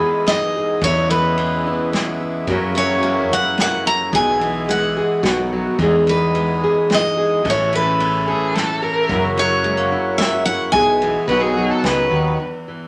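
In a straight 3/4 lilt, this tender, nostalgic acoustic folk-pop ballad, cut from a longer piece, sets a bright, full-bodied picked steel-string acoustic guitar melody up front over fingerpicked classical nylon-string guitar, sustained chords from a reedy, breathing hand-pumped harmonium, a growly, punchy fretless electric bass and a distant, roomy unplugged drum kit of tight kick, snare and dark ride cymbal played with bundle sticks, until an expressive violin enters at 8.3 seconds with a second line full of vibrato and portamento, all within a wet studio reverb.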